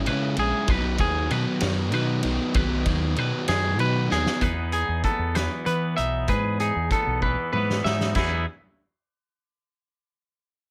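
Wistful yet bright, this short excerpt of math rock and midwest emo moves at 64 BPM in a straight 6/8, centred on E major and drifting from C#m7 and B toward Emaj7. A clean, bright semi-hollow guitar picks arpeggios up front throughout, while a double-tracked, overdriven semi-hollow guitar carries a lower riff through the opening 4.4 seconds. A growling, fingered electric bass with overdrive sits prominently beneath them, and a loose indie drum kit, heard at a distance in a roomy studio with dark cymbals, a punchy kick and a rolled-off top, works through crash, ride, hi-hat, snare and toms. At 4.4 seconds, just after a drum fill, the riff guitar stops and a compressed, twangy electric guitar takes up clean picked accompaniment as the harmony settles on Emaj7. Another drum fill near the end leads into a brief closing stretch, all bathed in light reverb.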